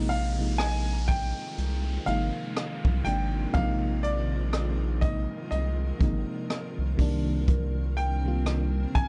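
Contemporary R&B at a slow 61 BPM with a swung sixteenth-note feel, this longing, moody excerpt sits on a Bb9sus4 chord before moving to Cm9 at 7.0 seconds, in a dark, warm studio sound. A jazz brush drum kit with a boomy kick, hi-hat and rim click leads the mix alongside a round, wave-folded analog bass and a tremolo-laden FM electric piano, while a bright baby grand piano with audible action noise carries the high melody through digital delay. A cloudy granular pad drifts in at 0.9 seconds beneath a very quiet FM bell with chorus and phaser, and an electronic downlifter runs until 7.5 seconds.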